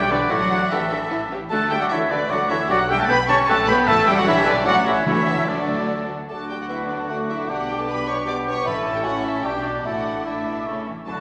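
A graceful, cheerful classical-period orchestral movement in a quick triple metre opens with most of the ensemble at once. Bowed violins carry an expressive, vibrato-rich melody over a second violin line, viola accompaniment, cello and double bass, while flute, oboe and clarinet weave supporting lines and very quiet French horns hold sustained chords. Mellow trumpets punctuate with tight stabs until 6.1 s, round soft-mallet timpani enter at 3.9 s, and a light-vibrato bassoon adds accompaniment from 6.7 s, all bathed in a wet scoring-stage reverb.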